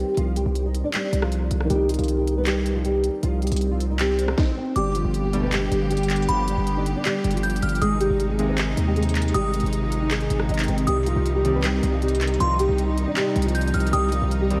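Dark and eerie, this half-time trap and hip hop cut moves at 157 BPM in C harmonic minor, drifting through a dreamy hall-reverb haze dusted with vinyl crackle. A small, thumb-plucked nylon-string guitar carries the melody throughout, colored by ensemble chorus and analog delay, while a boxy, mellow grand piano sits in the background until 4.4 seconds. Underneath, a heavy, aggressive distorted 808 bass sits up front, and an electronic trap kit brings a hard-clipped kick, sharp snare, crisp hats, handclaps and rim clicks. A faint electronic swell leads into the second section at 4.8 seconds, where a clear, smoothly bowed symphonic string section holds sustained chords and a delicate, tinkling FM tine bell adds a high second line with chorus and delay. Brief glossy, retro polysynth stabs with a filter sweep punctuate the passage in the background as the chords move from C minor through G and A-flat back to C minor.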